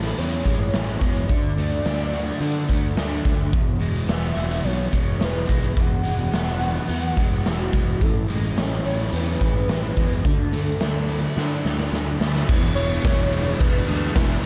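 A straight 4/4 pulse from a raw garage drum kit drives this hazy, dreamy shoegaze and dream pop rock fragment. The kit is saturated, gritty and up front in a bright stone room, and a fill at 11.4 seconds leads into a new section at 12.5 seconds. Fuzz picked electric bass growls underneath while an overdriven semi-hollow guitar plays a riff drenched in lush chorus, and a twangy, clean electric guitar sits barely audible beneath them. On top, a velvety, detuned synth lead carries the melody with chorus, vibrato and slapback echo, and the dark studio reverb frames chords moving from Amaj7 through D and Eadd9 to a closing E7.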